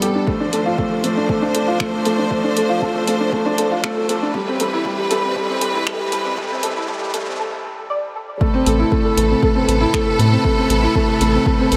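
A straight 4/4 pulse at 118 BPM drives this hypnotic, moving piano-and-strings electronica, with an overdriven electronic kick and a layered deep house kit of finger snaps and high-passed hi-hats, re-recorded in a small room, under a felt-muted upright piano riff that sounds boxy and intimate with audible action noise and a touch of delay. Lush, bowed studio strings hold vibrato-rich sustained chords moving from Dm7 to Cmaj7 with sidechain pumping, while a soft, dark pluck arpeggio sits in the background through chorus, cassette tape colour and delay, its filter sweeping during the build-up as a very quiet riser sounds beneath. After a break at 7.4 seconds, the drop lands on Amadd9 at 8.4 seconds, and a round, nasal analog bass enters at 8.7 seconds, all bathed in a huge ambient reverb.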